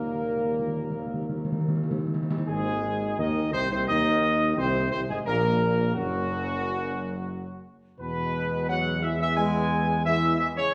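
Triumphant yet solemn, this classical brass passage is cut from a longer piece and moves in a steady four. A dark trumpet section carries the melody up front with light vibrato, its tone distant and roomy. Beneath it, a dark trombone section and a mellow French horn section hold sustained chords in the background, while a mellow tuba anchors the bass with a soft attack and a smooth top. Timpani struck with hard mallets open the passage with an articulate, close and dry fill up front, stopping at 2.5 seconds as the second section begins. The chords shift from Eb5 to Ab, Gb and finally E, and the brass sits in a wet recital hall reverb.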